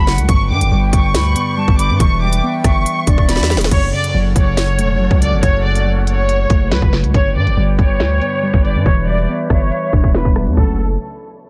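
The rhythm is a half-time drill groove at 140 BPM in 4/4, driven by an up-front electronic kit whose hard-clipped kick, sharp snare, crisp hi-hats, rim clicks, toms and crash cymbal carry the track, with a drum fill at 3.3 seconds. Beneath it, a distorted 808-style bass sits up front, heavy and saturated, its fast attack decaying, with a noise layer blended into its tone. The mood is tense and dark, set in F# phrygian over chords that move from G and Em7 to F#m. A lush, distant violin section carries the melody with soft-attack bowing, vibrato and expressive portamento, treated with delay and a low-pass filter. Muted, felt-like synth keys with a chorus effect give intimate accompaniment, while a small flute group holds pure sustained chords, and a hollow, close-miked concert flute adds an airy second line in the background until 3.7 seconds, when a filter sweep opens the next section. The dense, heavily limited mix has little reverb, and this is a short cut from a longer piece.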